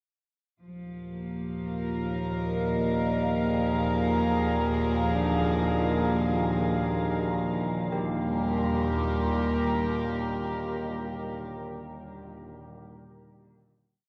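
Dark and desolate, this complete dark ambient drone in free time and E-flat major opens as a reedy, gut-string chamber cello section holds slowly shifting chords up front beside a resonant sawtooth-and-sine drone whose overtones sweep under chorus, while an icy, crystalline pad fades in and sustains one high note in the background until 7.9 seconds, when the harmony settles from Ebsus2 onto a final Eb chord, and bronze carillon bells from 5.2 seconds ring two slow arpeggio loops of unequal length drifting against each other through diffuse delay, all set in a vast cathedral reverb with cassette tape colour and lossy compression artefacts.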